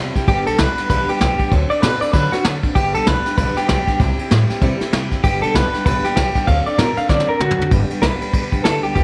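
Swinging at 194 BPM in 4/4, this rollicking, upbeat rockabilly clip in G major rides on a thumpy, woody pizzicato upright bass, a picked steel-string acoustic guitar with audible finger squeak, and a vintage brush kit with dark cymbals and a punchy kick, while an up-front, slightly broken-up electric guitar through a small old amp carries the lo-fi melody with tremolo and tape echo from 0.3 seconds, and a drum fill at 7.1 seconds leads into a new section at 7.7 seconds, set in a small room with light reverb.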